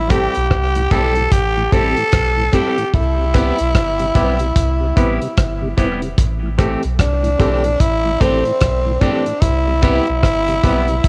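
A cloth-damped, thuddy drum kit sits up front with a tight kick, hi-hat and rim click, its top rolled off, setting a laid-back, hypnotic roots reggae groove in 4/4 with a gentle sixteenth-note swing. Beneath it, a soft dub sub bass gives round, deep tones with a touch of transformer saturation, holding the low end through the whole passage. A raspy, punchy tenor saxophone carries the melody close-miked and to the fore, its vibrato carried along by tape echo. Around it, a bright, clean electric guitar adds picked accompaniment through phaser and tape echo, while a dark tonewheel organ with chorus vibrato and a slow rotary speaker murmurs in the background. A gritty, reedy electric piano, overdriven through a combo amp with fast tremolo, drops in stabs over chords that move between Am7 and Cmaj7, and the whole cut from a longer piece carries the character of a home cassette recording in a small room with light reverb.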